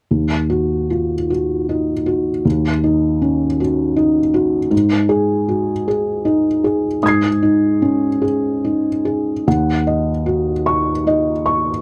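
Neoclassical minimalist piano in Eb dorian, intimate and wistful, drifting in a rubato 6/8 at roughly 46-54 BPM counted in dotted quarters across this short fragment of a longer piece. A solo felt-muted upright piano, up front and close-miked with fine detail, sounds dark and mellow through its thick felt, with audible action noise adding a natural, hushed closeness as it spans Eb2 to C7 in light reverb. The harmony moves from Ebm7 to Ab at 4.7 seconds, and a new section at 9.5 seconds returns to Ebm7 before the fragment ends at 11.8 seconds.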